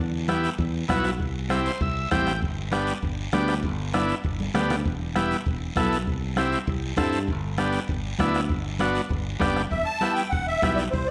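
A large studio room with moderate reverb frames this danceable, sunny cumbia excerpt at 197 BPM, where a bright, growly fingered electric bass and a buzzy vintage combo organ with light vibrato sit up front over a soft-beater bombo, thick-skinned congas and a raspy guiro, cycling through Em, C and G with an organ fill at 1.5 seconds and a drum fill at 4.4 seconds before a reedy, shimmering musette accordion takes the melody at 9.7 seconds.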